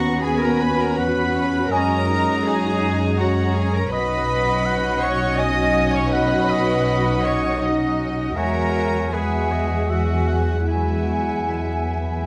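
A dark, woody double bass section up front and a pure, floating cello section further back anchor this moving, hopeful cinematic film score in B major, flowing in a rubato 3/4 at around 80 BPM, as roomy French horns hold sustained chords and a lush viola section accompanies from the background, while a warm studio violin section carries the soft-attacked melody, joined by a chamber violin section and a clear oboe on second lines, with a classical-style solo clarinet and an airy flute ensemble entering at 1.7 s, the music set in moderate scoring-stage reverb over vinyl crackle.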